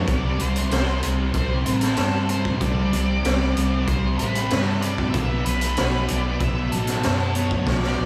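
Hazy and dreamy, this short shoegaze and dream pop rock excerpt pairs a double-tracked, up-front fuzz guitar riff shimmering with analog chorus against a dark octave-fuzz lead melody trailing diffuse ambient delay, all over a round, hollow-body fingered bass and a gritty, saturated garage drum kit with a punchy kick and high-tuned snare, moving from C5 to Bm7 at 5.1 seconds before a drum fill at 7.7 seconds, the whole mix soaked in a lush hall reverb.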